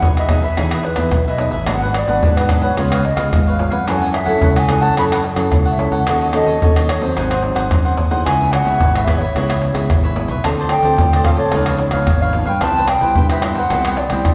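A straight 4/4 samba and choro groove from an up-front, compressed and saturated percussion section of egg shaker, tight surdo, pandeiro and tamborim drives this joyful, sunny excerpt, where a breathy wooden flute with vibrato, soft attack and lifted highs carries the melody over crisp, bright picked cavaquinho, small fingerpicked nylon-string guitar and a punchy, amped fretless electric bass, moving through a chord sequence from Emaj7 to Cmaj7 in the bloom of a reverberant recital hall.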